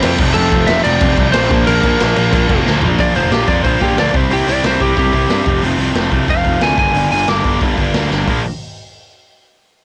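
A straight 4/4 punk rock drive at 182 BPM in Bb lydian powers this energetic, rowdy excerpt, as a raw garage drum kit with a punchy kick, dark cymbals and a gritty, rolled-off top sits up front beside a growly fuzz picked electric bass, a bright, tight distorted guitar riff and a sludgy overdriven guitar tucked in the background, while a twangy, slightly broken-up lead guitar carries the melody and takes a solo from 3.0 to 8.3 seconds over F, Bb, C and Gm chords, all captured dry on a home cassette recording.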